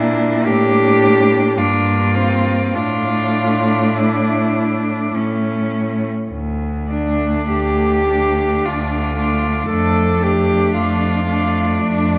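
Classical and lyrical, this short passage for a cello ensemble of four players is cut from a longer piece and carries an elegiac, yearning mood in a slow, rubato triple metre. The melody cello sits up front with an intimate, close presence, its tone soft in attack and airy under the bow, played sul tasto with light vibrato. Beneath it a second cello carries an intense second line with a smooth top, while a third supplies an even accompaniment, and a fourth anchors the bass with a focused yet distant sound. All four play bowed with vibrato throughout the 12.2 seconds, the lower three sharing a rich timbre. The harmony moves from Bbmaj7 through Gm and Asus4 before settling on Dm and then Dm/F, and a moderate concert hall reverb lends the ensemble a spacious glow.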